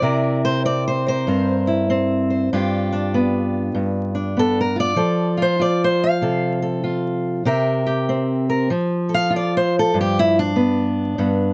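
Acoustic country blues at 97 BPM in 4/4 with a swung eighth-note feel, this soulful, swaggering excerpt in C mixolydian features a lone fingerpicked steel-string acoustic guitar, up front and concert-toned, playing solo from 0.0 to 11.5 seconds across a range from G2 to F5. The harmony moves from C7 to G7 at 2.5 seconds, then through F and back to C7 before a quicker turn through F at 8.7 seconds and G7 at 9.9 seconds. Close, detailed miking with little reverb gives an intimate, dry sound, tinged by a layer of vinyl crackle.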